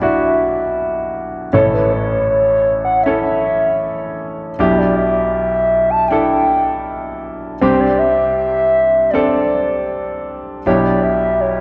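Bathed in a concert-hall reverb with a dark, warm production, this heartfelt pop excerpt moves at an unhurried 79 BPM in 4/4. A hollow, woody synth lead with a clarinet-like voice carries the melody, its soft attack, sustained tones, vibrato and chorus giving it a mellow glow. Underneath, an intimate, up-front grand piano plays clear, natural accompaniment, its action noise audible, as the harmony moves from Em7/B to A, back to Em7/B, then on to Csus2, and returns to Em7/B at 10.7 seconds.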